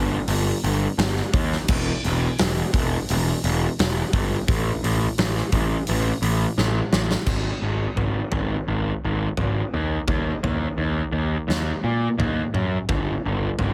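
Quiet-loud alternative rock at 86 BPM in a straight 4/4, cut from a longer piece, with a cathartic, bittersweet mood. A growly, overdriven fuzz bass, picked and bright, sits up front from the start, joined at 0.3 seconds by a huge arena drum kit with a fat snare, punchy kick, crash, hi-hat and toms in a big, natural room. A drum fill at 6.6 seconds leads into a half-time second section at 7.3 seconds, all set in light reverb with a heavily compressed radio sound.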